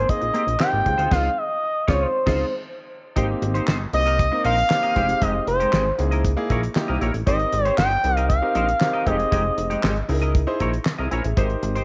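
A smooth, vibrato-laden sawtooth synth lead with tape echo carries the melody over a glossy, detuned synth bass and a twangy, clean electric guitar riff from the opening, joined almost at once by an intimate grand piano with audible action noise and a dry, damped drum kit with fat snare, tight kick, hi-hat, crash and handclaps, the band hitting an accent from 1.1 to 3.2 seconds before moving through major seventh, minor seventh and ninth chords, with the lead dropping out at 10.1 seconds in this feel-good, danceable early-eighties boogie funk passage cut from a longer piece.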